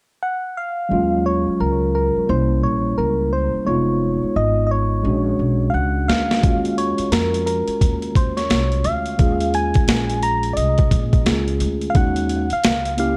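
A moderate studio ambience frames this cool, smoky jazz-hop excerpt, cut from a longer piece and carrying a swung hip hop feel. A round, gentle FM synth lead carries the melody up front with chorus, vibrato and plate reverb. A mellow tine electric piano, heard through its built-in speakers, and a woody pizzicato upright bass join at 0.9 seconds over extended jazz chords, and at 6.1 seconds a gritty, compressed boom bap drum kit arrives up front with a thumpy kick and high-tuned snare, re-recorded in a large room.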